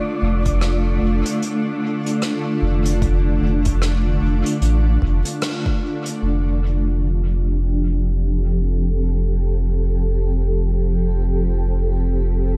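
A relaxed 75 BPM ambient dub groove in 4/4 with a 60% swing on the sixteenths, this peaceful, spacious excerpt in F major opens on Dm/F, with a cloudy, evolving granular pad and a breathy, wind-like noise layer sitting in the background until 6.2 seconds, while a round, up-front sub bass underpins an overdriven deep electronic kick and a brushed vintage kit of hi-hat and rim click with dub echo, both drums playing from 0.5 seconds and hitting a band accent at 5.4 seconds before dropping out, leaving pad and bass to settle on F as a filter sweep moves across the pad until 12.6 seconds.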